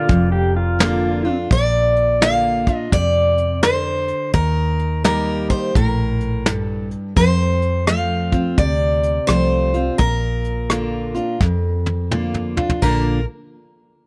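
A picked steel-string acoustic guitar carries the melody from 1.5 seconds onward, its fresh strings sounding up front in this easygoing, nostalgic honky-tonk and classic country excerpt, set in Bb major at 85 BPM in 4/4 with a swung eighth-note feel. Before it enters, a pedal steel guitar opens with a short twangy second line, while another pedal steel sits in the background with sustained chords, both clean, compressed, played with fingerpicks and shaped by volume swells and slide. A second dreadnought acoustic guitar, bright and full-bodied, picks out the accompaniment throughout. A vintage muted fingered electric bass gives a dark, round, foam-muted low end, and a soft brush drum kit with a punchy kick and medium-tuned snare moves across hi-hat, ride, rim click and toms, closing with a fill at 11.4 seconds. The harmony moves from Bb to Eb, then F and back to Bb, captured in a dry, close 1970s-style studio sound with small room ambience.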